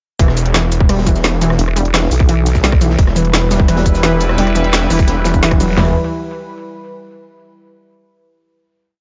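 An overdriven drum and bass kit with a tight kick, cracking snare and toms drives this dark, futuristic piece of technical drum and bass at 172 BPM in E minor, layered with a second overdriven kit of woody snare, rim, shaker and bright hats, a very quiet, gritty looped breakbeat, a thick detuned saw bass in chopped phrases, and a lush, wave-folded unison pluck whose 5-step arpeggio loop drifts against the bar with delay and sidechain pumping, before a nasal, formant-filtered wobble bass enters at 1.6 seconds and an evolving, resonant sawtooth pad swells in at 3.0 seconds, all set in a digital ambience with a final chord ringing from 5.8 seconds.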